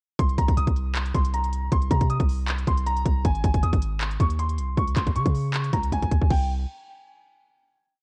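Worn, warbling cassette tape with warbly pitch drift and little reverb colours this brooding, melancholic half-time trap piece in C phrygian at 157 BPM. A dark, boxy grand piano repeats a looping high melody like a sampled loop over deep, boomy 808-style sub-bass notes that follow the kick with pitch slides, while an up-front, bouncy trap kit drives the hook with a hard-clipped kick, crisp sixteenth-note hi-hats, handclaps, crash cymbal and vintage 12-bit sampler grit, adds a drum fill at 5.9 seconds, and gives way to a final C5 chord at 6.3 seconds.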